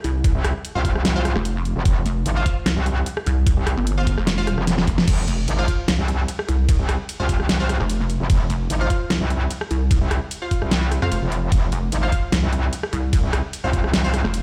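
Heavy wobble dubstep in F minor at 149 BPM with a half-time feel, this chaotic, aggressive excerpt from a longer piece pairs a heavy, detuned, saturated pluck wobble bass with a distorted, metallic FM wobble bass up front, both chorused and overdriven, beneath a knocking, tape-toned electronic kick and a layered dubstep kit of huge snare, bright hats, rim clicks, ride and crash that breaks into a short fill at 4.7 seconds, while a bold, punchy orchestra-hit-like sawtooth stab with a noise layer, filter sweep and digital delay punctuates an F5 chord, all heard as if blasted over a big sound system in a bare stone room.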